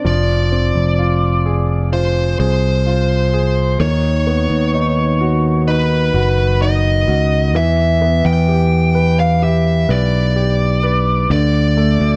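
A smooth, overdriven lead guitar sings the melody up front in this tender, emotional pop ballad excerpt at 64 BPM in a straight 4/4, its picked electric tone carrying the feeling. A concert grand piano accompanies with an intimate, polished sound, deep bass, long sustain and audible action noise, while a bright, growly picked electric bass enters at 0.1 seconds with a direct, amped edge. A small room ambience and dark, warm production frame the chord path from Fm through B/D# and Em7 to D5.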